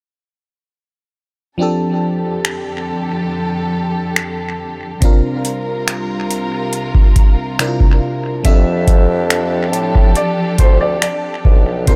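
A straight 4/4 pulse at 70 BPM from a booming, overdriven analog drum machine, with deep kick, metallic hi-hat and finger snaps sitting up front from 2.4 seconds, carries this tender, dreamy contemporary R&B excerpt in F major, where a glassy, bell-like FM electric piano treated with chorus, phaser and tape echo provides accompaniment and a lush, woody bowed string section holds sustained chords from 1.6 seconds before a natural-toned baby grand piano melody with tape echo and a soft-attack bassoon bass line with light vibrato arrive at 8.4 seconds, within an echo-heavy small-room mix.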